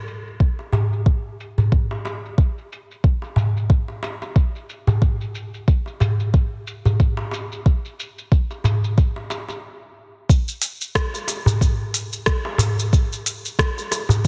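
Downtempo with an earthy, mystical feel and a loose swing, built from an organic electronic drum kit of crisp, filtered hats, rim click and shaker, a soft electronic kick sitting up front, and a clay-shelled darbuka played with soft hands in a live room, all dropping out in a brief stop from 9.6 to 10.3 seconds before a new section of this short cut resumes.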